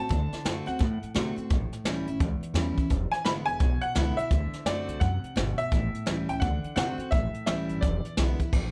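Rockabilly with a retro, upbeat swing, this brief cut from a longer piece moves through D7, A7 and E7 changes over about 8.7 seconds. A clear, slightly detuned upright piano carries the melody up front with short sustain and plate reverb, while a full-bodied picked steel-string acoustic guitar picks out accompaniment with audible finger squeak and its own plate reverb. Underneath, a thumpy pizzicato upright bass sounds woody, and a roomy brush kit adds dark cymbals, a medium-tuned snare and a boomy kick, all in a light reverb.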